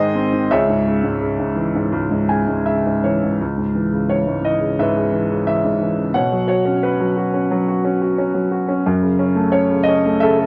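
A lone concert grand piano opens on a G# and settles into C# minor, playing a brooding, lyrical classical passage in a free, rubato 4/4, with a fill from 1.9 to 3.4 seconds. At 3.4 seconds the music moves into a new section, drifting through C#m7, Bsus2 and F#m across a range from C#2 to G#5. The piano sits up front with a deep bass, a boxy body and long sustain, set in a moderate studio reverb, and the moody passage is cut from a longer piece.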